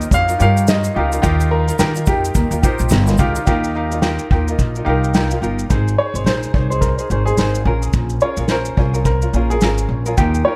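This easy-going, sunny acoustic pop excerpt at 107 BPM with a swung sixteenth feel opens on an Ebadd9 chord, with a polished concert grand piano, a light thumb-plucked tenor ukulele, a growly pizzicato upright bass and an up-front, dark unplugged drum kit played with bundle sticks, alongside a grainy tube shaker in the background. An intimate upright piano with audible action noise carries the melody through a dub echo from 0.1 seconds, while the grand adds a fill at 2.6 seconds before dropping out at 5.7 seconds as the harmony moves to Abadd9, in an echo-heavy mix with a lightly reverberant small-room ambience.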